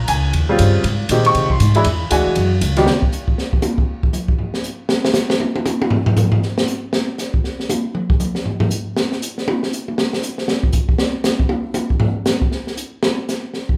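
Small-group swing and bop jazz at a brisk 236 BPM, this sophisticated, swinging excerpt from a longer piece opens with a clear, slightly detuned upright piano comping over Eb13, Abmaj7 and E9 alongside a woody, growly pizzicato upright bass, both stopping at 2.9 seconds. From there the open acoustic drum kit takes a solo through to the end, its high-tuned snare and boomy kick sitting up front with hi-hat, ride cymbal and toms. The band plays live in one large studio room with moderate reverb.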